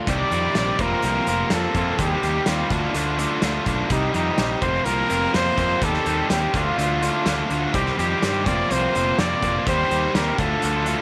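A straight 4/4 pulse at 125 BPM drives this bittersweet, moody indie rock excerpt in C dorian, where a loose, small-room drum kit with a punchy kick and medium-tuned snare backs a dark, round fuzz-overdriven bass, an overdriven guitar riff joined by a bright, up-front cranked stack guitar with analog chorus and slapback echo, and a clear, close-miked solo trumpet singing a vibrato-laced melody with its own slapback echo over a looping Cm, Fsus4, Cm/Eb, Dm progression (opening on Cmadd9) in moderate plate reverb.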